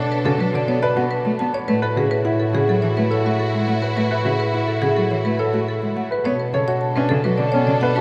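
Bathed in a vast, echoing cathedral reverb, this bright, propulsive minimalist classical excerpt sets a woody, hard-mallet marimba melody over clear concert grand piano arpeggios, sustained chords from a smooth studio violin section with light vibrato, a single bowed cello with vibrato entering at 0.2 s, and a dark solo bass clarinet carrying the bass line.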